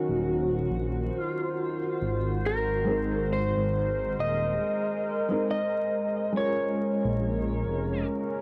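A home-cassette sound with vinyl crackle and light reverb frames this brooding, smoky trip hop fragment, which moves at a slow 69 BPM in Eb dorian with a swung 16th-note feel. A clean, electric lap steel carries the melody with fingerpicks, slide and volume swells through dub echo, over a soft, felt-muted upright piano given tremolo and 12-bit sampler grit, and a deep, evolving pad of chorused, detuned saws with a slow attack and long release. Underneath, a rumbling, beating saw bass with tube saturation sits up front as the chords shift from Ebm7 to Abadd9 at 2.9 seconds and Bbm7 at 6.4 seconds.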